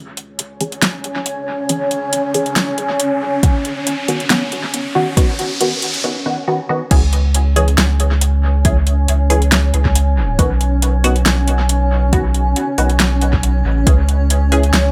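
Over a half-time 138 BPM pulse in C# minor, this heavy, meditative deep dubstep excerpt opens with a round, up-front sub bass and muted, detuned sawtooth chord stabs coloured by phaser, lush chorus and dub echo and shaped by a filter sweep, while a cloudy, wave-folded granular pad drifts above, a deep house kit with fat snare, metallic hats and crash adds echo, a riser builds from 2.0 to 6.0 seconds, a deep, tape-warm electronic kick enters at 3.4 seconds, and after a brief break the drop lands at 6.9 seconds, all in an echo-heavy mix.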